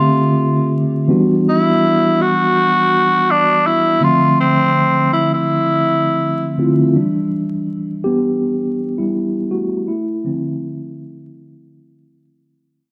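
R&B with an introspective, late-night mood, in which a raspy, gritty tenor saxophone with plate reverb carries an up-front melody until 6.5 s over a mellow tine electric piano, which then plays alone from 6.9 s as the music fades out, set in a reverberant studio room with a layer of vinyl crackle.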